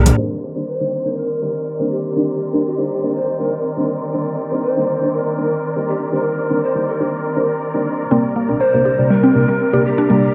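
In a straight 4/4 house groove, this hypnotic, spiritual passage cut from a longer piece sets deep, detuned chord stabs with dub echo against a veiled, con sordino string section whose sustained chords move through a filter sweep, while a breathy bamboo pan flute with chiff carries the melody from 0.7 seconds and a woody FM mallet pluck flickers briefly at the start before returning with arpeggios at 8.1 seconds as the harmony shifts from Cm9 to Gm/C, the echo-heavy mix soaked in spring reverb.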